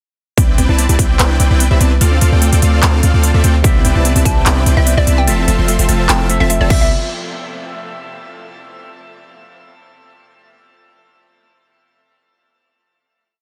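A deep, boomy 808-style bass sits up front in this lush, bright future bass piece, its sine tone rounded out by a noise layer and moving with the chord changes from Cmaj9 through Dm7 and Fmaj7. Above it, a huge, detuned supersaw pumps with sidechain and tape echo, laying down pulsing gated chords in an open voicing. A gentle, tine-like FM pluck with chorus spins an eight-step arpeggio in the background, while an overdriven big-room kit supplies crisp hats with rolls, handclaps and crash cymbal over a half-time beat. A punchy, layered kick drum appears briefly at the start, returns at 3.6 s with a gritty, barky electric piano pushing syncopated held chords, and at 4.3 s a hollow, bouncy square-wave pluck adds short phrases up high. The drop closes at 6.9 s on a final note, with light reverb and a dense, heavily limited modern master.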